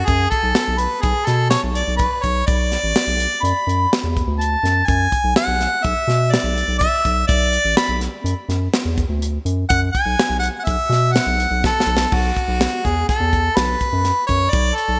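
A clear, up-front harmonica with slapback echo solos over a round, deep analog bass and a tight, dry funk drum kit with bright cymbals and a high-tuned snare in this brooding, intricate progressive instrumental in 5/4 at 124 BPM in B dorian, where a drum fill at 11.6 seconds leads into a new section at 12.1 seconds, the band heard in a big arena sound with moderate scoring-stage reverb in a passage cut from a longer piece.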